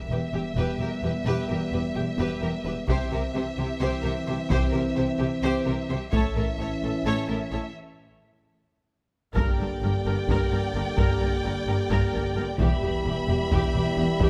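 Cinematic, epic orchestral film score in a driving 7/8 at 259 BPM counted in eighths, relentless and dramatic, cut from a longer piece. Two lush, bowed violin sections carry the melody high above and a second line beneath it, while violas fill in the accompaniment and cellos and a clear, focused double bass section anchor the bass, all sung with ensemble vibrato. A mellow, tightly played French horn section holds sustained chords throughout, moving through Em, C and A before the harmony shifts to Gm and back to Em. Compressed, saturated taiko drums struck with hard sticks enter at 2.9 seconds, drop out at 6.6 seconds, then return at 9.4 seconds after a break and a drum fill, and at 9.4 seconds a bright trombone section joins in the background with its own sustained chords. The sound is close and detailed, with light reverb.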